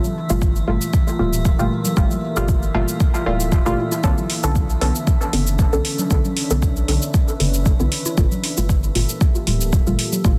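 Dub techno with a nocturnal, cavernous mood, built on a deep up-front kick drum, a round, soft sub bass, metallic electronic hats and cabasa, background congas with dub echo, and a muted, detuned chord stab under a filter sweep, while a moody sawtooth pad and an eerie, warbling FM drone pulse with sidechain pumping over Gm9 and Bm9 chords and a crackling, heavily limited master.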